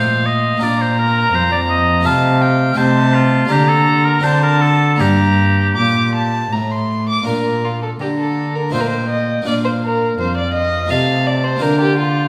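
In a straight 3/4 at 83 BPM, this serene, radiant baroque-style sonata movement in G minor turns to Bb major at 7.3 s, with a clear oboe singing the melody with vibrato over a warm, gut-string violin second line, a brilliant, close-miked Flemish-style harpsichord plucking the accompaniment, and a dark, lightly vibrato cello holding the bass, all set in a wet recital hall reverb in this short cut from a longer piece.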